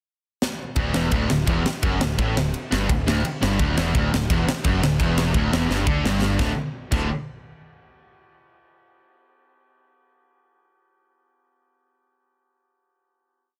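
Punk rock at 171 BPM in D major, upbeat and rebellious, this short whole piece opens with a drum fill at 0.4 seconds before three picked guitars and a fuzzed, overdriven bass crash in at 0.8 seconds on a single-note riff over a D chord. The tight metal drum kit sits up front with airy, bright cymbals, a high-tuned snare and a tight kick playing a two-step groove. The guitars stack a bright, tightly distorted riff with a warm overdriven one and a double-tracked, compressed fuzz guitar in the background, while the round bass drives eighth notes doubling the riff, all in a dense, heavily limited modern master with little reverb before a second fill leads into the final chord at 6.4 seconds.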